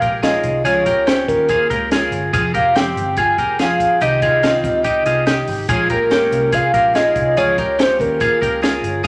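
A moderate large-studio reverb, about 1.4 s long, gives this cut from a longer jangly indie pop piece a roomy glow; the mood is bittersweet and restless, moving at 143 BPM in a straight 4/4. Up front, a hollow, woody clarinet-like synth lead carries the melody between Bb4 and Ab5, its vintage square-and-triangle tone sustained and soft-attacked, warbling with chorus and vibrato over a noise layer and sub octave. A bright, twangy twelve-string electric guitar, also up front, plays clean, compressed picked arpeggios, while a shimmering, octave-doubled jumbo twelve-string acoustic adds full-bodied picked accompaniment from the background. A dark, round vintage electric bass, amped and foam-muted, holds the low end, and a compact cocktail kit supplies dry hi-hat, a high-tuned snare and a boomy kick. The chords move through Bbm7, Db6, Fmadd9 and Cm, then return to Bbm7 at 5.7 s and Db6 at 7.4 s.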